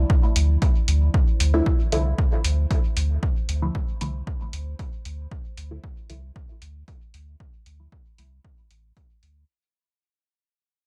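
A hazy, meditative stretch of dub techno opens on a Dmadd9 chord, with a deep sub bass, a dark analog pad and muted, filtered chord stabs all sounding from the first moment. The sub bass is round and sine-like, sitting up front with a fast attack and a sustained body, while the pad hangs in the background, moody and nasal, its slow attack and long release softened by lush chorus. The detuned sawtooth and square-wave stabs have a filter pluck and short decay, washed through a phaser and dub echo, and they fall away at 8.4 seconds. A punchy analog kick, re-recorded in a small room and placed up front, drives a straight pulse, joined by a small-room electronic hi-hat, while sidechain pumping breathes through the pad, stabs and bass. Digital ambience surrounds the mix, and the whole passage, cut from a longer piece, fades out across its full length.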